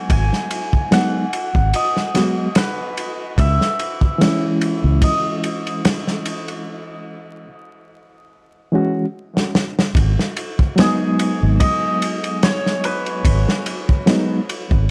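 Dry and gritty, this short trip hop excerpt sits in a small room with a bed of vinyl crackle, its smoky, dark mood set at a slow 73 BPM in G# minor with a light swing on the sixteenths. A crunchy breakbeat kit sits up front, its tight kick, medium-tuned snare and dark ride cymbal saturated and rolled off at the top. A round, foam-muted fingered electric bass plays low and direct, dropping out at 5.0 seconds and returning at 9.9 seconds. Underneath, a reedy electric piano carries the chords from G#m7 to C#m through a fast tremolo and harmonic tremolo, roughened by vintage 12-bit sampler grit and tape echo. Above it, a hammered cimbalom rings and shimmers with its own tape echo, played softer than the rest of the band. A break opens at 6.7 seconds, and a drum fill leads into a new section that lands back on G#m7 at 10.0 seconds.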